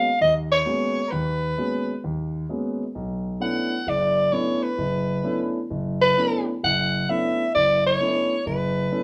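A growling soprano saxophone and a concert grand piano begin together in this intense, spiritual jazz passage, swinging at 131 BPM in 4/4. The raspy saxophone carries the melody up front with vibrato and scooped notes, while the warm piano accompanies with a deep bass as the harmony moves from G#m11 to Bm11 at 2.9 seconds. A wet club reverb gives the saxophone a roomy, distant edge.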